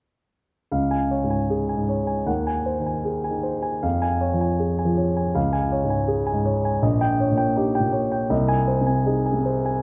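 In a rubato 2/4 at roughly 75-83 BPM, this short passage from a romantic classical character piece unfolds in Db major with a warm, hopeful mood. A single grand piano, dark and mellow and set up front, plays from 0.7 to 9.8 seconds across a range from Bb1 to Ab5, moving through Db, Ab7/Eb, Db/F, Eb7/Bb and Ab/C. A moderate concert hall reverb gives the sound a gentle sense of space.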